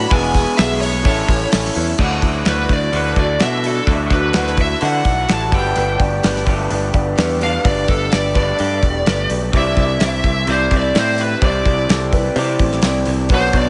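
A jangly, hopeful slice of folk and heartland rock opens with a full band at once: a dark, distorted, bluesy lead guitar carries the melody through analog delay, over a twangy, slightly broken-up electric guitar riff played through a small old amp and a boxy acoustic archtop picked in the background, both bathed in lush chorus. A growly, punchy picked electric bass sits up front alongside a damped 70s drum kit with a tight kick, medium-tuned snare, hi-hat and dark crash cymbals, while a reedy, sweet accordion holds soft sustained chords. A distant, jingly tambourine and a barely audible, barky tremolo electric piano add color in the opening moments. From 2.0 seconds the lead guitar stretches into a solo over chords moving from Dadd9 to Gadd9 and Cadd9, and a mellow, woody upright piano with audible action noise slips in a brief second line at 6.0 seconds. At 9.5 seconds the electric piano returns, and the tambourine rejoins at 10.0 seconds, all of it floating in a dreamy, reverb-soaked mix with a cathedral-sized tail and a soft, rolled-off top.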